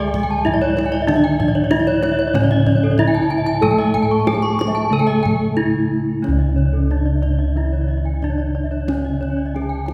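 The recording sits in a wet concert hall with a 2.2-second reverb tail, heard from further back in the room. This hypnotic, brilliant Balinese gamelan passage is cut from a longer piece, moving at 92 BPM in a straight 4/4 in C# pelog. A bright, up-front bronze metallophone carries the melody, while a lower metallophone plays accompaniment and two more spin arpeggios high above, the second joining at 0.1 seconds. Every metallophone rings with the shimmering beats of paired tuning: one has a dark, smooth colour, and two have a boxy, small-room character. Bossed gongs struck with padded beaters give a round, mellow, soft bass that also sits up front. The deep, acoustic kendang stays in the background from 0.1 seconds, and a new section begins at 6.2 seconds.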